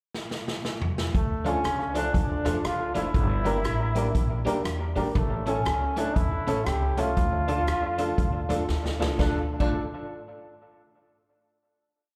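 A drum fill on a street-band kit opens this short, energetic ska piece heard live through a club's PA, then a woody pizzicato upright bass walks with chromatic approach notes beneath a bright, vibrato-laden trombone playing hook phrases through slapback and tape echo, while a slightly broken-up electric guitar and a dark, slightly detuned upright piano chop the off-beats over the kit's side-stick backbeat and boomy kick, the band driving toward a final chord at 9.2 seconds.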